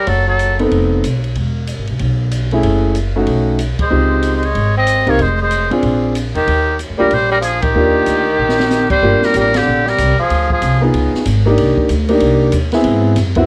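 Warm and sophisticated, this short cut from a longer small-group jazz piece swings in a bop vein, its horns stating a brief figure at the very start before dropping out and returning at 3.8 seconds. A buzzy, thin trumpet with a metal mute carries the melody with vibrato and scooped notes, while a bright tenor saxophone sits up front on a second line beneath it, both with soft attacks. A woody pizzicato upright bass and a clear grand piano comping up front drive the harmony through rich chromatic changes, and an open acoustic drum kit with dark cymbals, a high-tuned snare and a boomy kick keeps time at a lower level. Band accents land at 3.8, 7.6 and 9.5 seconds, with a quick drum fill just before the second section begins, and the horns fall away at 10.8 seconds, leaving the rhythm section to carry on. The whole recording sits in a moderate small room and has the worn, warbling pitch drift of old cassette tape, giving it a vintage, slightly unsteady character.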